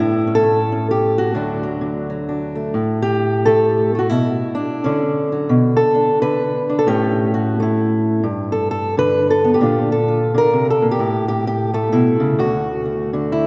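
A warm, up-front fingerpicked acoustic archtop guitar plays alone throughout this hopeful, peaceful folk fragment in a gently swung three-time lilt, moving through a brief opening on A and D before a longer passage that begins with a chordless moment at 2.7 seconds and wanders through B minor, A, G and an unexpected B-flat before settling back on D at 12.4 seconds, all bathed in the long, wet reverb of a church with a soft, rounded top end.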